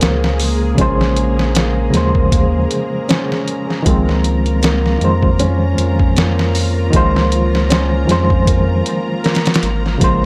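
An echo-heavy mix with light reverb frames this brooding, dark trip hop excerpt at 78 BPM with a swung 16th-note feel, where a muffled, pitched-down sampler-style drum kit with a thumpy kick sits up front, a round analog bass plays deep and sustained, an overdriven reed electric piano adds gritty fast tremolo with tape echo, a vintage sawtooth string machine of cellos holds mellow chorused chords, and a felt-muted upright piano traces intimate arpeggios through dub echo, moving from Bbm7 to Dbmaj7 at 3.9 seconds.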